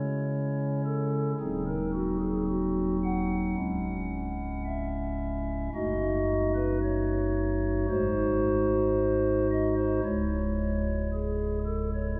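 Bathed in a long, wet church reverb, this dark, grave classical chorale excerpt at a slow 56 BPM features a solo pipe organ on soft, hollow stopped-flute stops, mellow and up front, its romantic voicing spanning C#1 to Gb5 as the C# minor harmony moves through diminished chords to a G#7 before returning to C#m.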